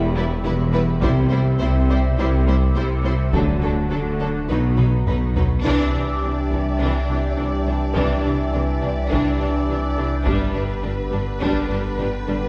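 A straight 4/4 pulse at 104 BPM drives this brooding, tense cinematic excerpt of hybrid orchestral and electronic film score, with a taiko ensemble struck with hard sticks entering at 1.0 s and pounding through a drum fill into a band accent at 5.6 s, as the harmony moves from Em through C, D and B to Cadd9 and G. Lush bowed vibrato violins carry the melody and a smooth second line above expressive violas, rich cellos and woody double basses that sit in the background alongside a vintage-toned French horn section and a mellow tuba that stops at 5.6 s, while a deep sine-and-triangle sub bass with octave anchors the low end. A swirling, nasal, detuned analog pad treated with phaser and chorus evolves over the chords, and the whole ensemble is heard from further back in a wet scoring-stage reverb.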